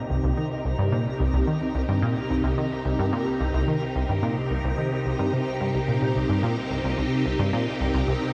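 A tight, driving sequenced synth riff sits up front, its detuned sawtooth tone given a warbling, vintage character by chorus and tape echo, with a fast filter pluck. Alongside it, a phased string machine holds swirling sustained chords through ensemble chorus, while a faint granular texture adds a twinkling, sparkling octave-up shimmer with its own built-in reverb. This brief, hypnotic fragment of ambient space music on a single C minor chord unfolds in a lush hall with a dark, warm production.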